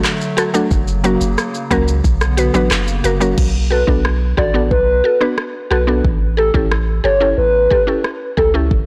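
Dancehall at 90 BPM in B minor with a sultry, hypnotic mood, where a punchy sub bass with a pitch-drop attack and an electronic afro-pop kit of deep kick, crisp hats, handclaps, rim clicks, shaker and crash run throughout, a woody, mallet-like synth pluck enters at 0.4 seconds over a dark, flute-like pad with sidechain pumping that stops at 3.4 seconds, when the hi-hats mute; at 3.7 seconds a hollow, clarinet-like synth lead with vibrato and digital delay arrives over Bm7 and A7 chords in a blown-out, overdriven mix with light reverb.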